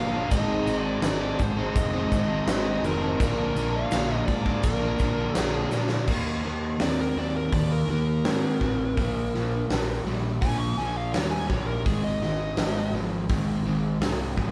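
A dark, distorted lead guitar carries the melody and breaks into a solo at 6.1 seconds in this swaggering, sunny classic rock clip at 83 BPM. Beneath it, a crunchy electric guitar and a warm semi-hollow guitar play riffs in the background, a fuzzy fingered bass anchors the low end, and an up-front big drum kit with a fat snare and tight kick drives the band. Until about 6 seconds, a shimmering, boxy twelve-string acoustic, a gritty tonewheel organ with key click and slow rotary speaker, and a grainy shaker fill out the sound, as the band plays live together in a large studio room.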